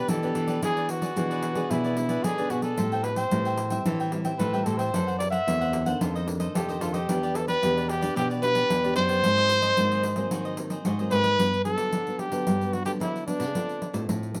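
A vibrato-laden trumpet sings the melody up front from the very start, joined at once by a crisp, bright cavaquinho and a full-bodied, fingerpicked nylon-string guitar, with a second nylon-string guitar thumb-plucking the bass line in the background and a jingly pandeiro played with soft hands. This short cut from a longer samba and choro piece has a joyful, festive character and a straight, lively four-beat feel. The trumpet carries a jazz-inflected solo voice over a chord progression that moves through minor sevenths, a half-diminished chord and a sixth chord before settling briefly on a major seventh. The cavaquinho drops out at 11.4 seconds as a new section begins, leaving trumpet, guitars and pandeiro to carry on. A moderate studio reverb gives the ensemble a sense of space, while the pandeiro sounds as if it sits in a small room.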